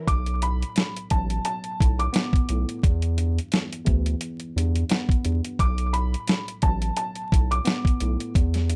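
Reflective and moody, this boom-bap hip-hop fragment with a light swing sets a dark, woody upright piano melody with audible action noise and a touch of delay high above a worn, slightly out-of-tune tine electric piano, a deep, round analog bass sitting up front, and a gritty, pitched-down sampler-style drum kit with a thumpy kick, all moving from Bm7 to Em and back under light reverb and vinyl crackle.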